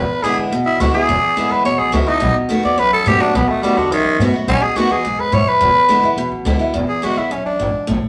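Rockabilly at a brisk 212 BPM in E mixolydian, upbeat and retro, with a raspy, growling tenor saxophone out front taking a solo over E7 and B7 until 6.8 s, backed by a bright, boxy picked parlour acoustic guitar with audible finger squeak and a woody, thumpy pizzicato upright bass on gut strings, all caught as a band playing live in a small room with moderate studio reverb in this brief cut from a longer piece.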